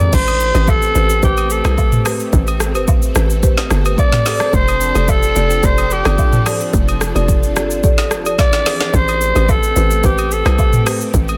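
Amapiano at 109 BPM in A minor with a hypnotic, deep mood, led up front by a raspy, growling alto saxophone with breathy vibrato over silky string-machine chords with ensemble chorus and sidechain pumping, an electronic afro-pop drum kit with a deep kick, crisp hats and a softly clipped woody snare that plays a fill from 8.4 to 8.9 seconds, a hollow, bouncy log drum bass, background agogo bells and woodblock, and mellow marimba stabs, all set in digital ambience under a dense, heavily limited modern master.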